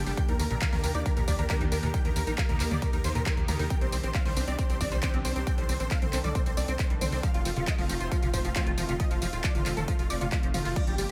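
A punchy, overdriven electronic kick sits up front, driving this soaring, euphoric uplifting trance excerpt at 136 BPM in 4/4 alongside an overdriven analog drum machine with crash, handclaps, hi-hat, tambourine and toms. A huge, detuned supersaw lead carries the bright melody through analog delay over a lush, airy unison pad treated with chorus and phaser, and both pump with the sidechain alongside a tight, driving sequencer bass and a squelchy, resonant acid bass arpeggio with delay tucked in the background. The harmony moves from Ebmaj7 to Cmadd9 at 3.7 seconds and F7 at 7.2 seconds, all in a light reverb.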